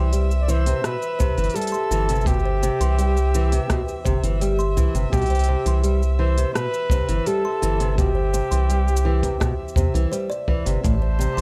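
Hopeful and pastoral, this short folktronica excerpt moves at 84 BPM in C major, with a breathy flugelhorn carrying the jazz-style melody through vintage sampler grit, digital delay and plate reverb while a woody kalimba adds a ringing second line in the background. A fingerpicked nylon-string guitar with audible finger squeak plays dark arpeggios, a chamber string quartet holds clear, bowed chords with vibrato, and a round, deep analog bass sits up front. A minimal electronic kit of clicky hi-hat, rim click and shaker enters at 0.1 seconds, a tight, saturated kick joins at 1.2 seconds, and the harmony rests on C before turning to Am7 at 10.8 seconds.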